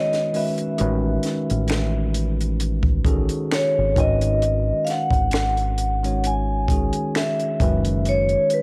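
A metallic, ringing vibraphone with medium hard mallets and slow motor vibrato carries a smooth, soulful melody over a bright, bell-like tine electric piano, a dry cocktail kit of finger snaps, hi-hat, punchy kick and high-tuned snare, and a deep, round fingered electric bass that enters at 0.8 s, in this slow 66 BPM R&B and neo-soul excerpt with lightly swung 16ths, cassette-tape colour on the vibraphone, piano and drums, moderate spring reverb and a home-recorded feel, moving through B69, A69, G#m7 and F#13sus4.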